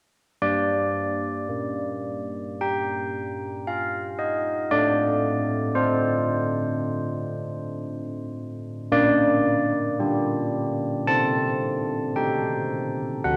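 Set in a straight, slow 4/4, this wintry, solemn classical tune for church bells features a solo carillon, heard up front with a soft, mellow, bronze ring and a padded-clapper touch, sounding from 0.4 to 13.4 seconds across a range of D3 to A5, its minor-third overtone blooming in a wet church reverb as the harmony moves from Gm through D5/A and Gm/Bb to Adim/C in this fragment cut from a longer piece.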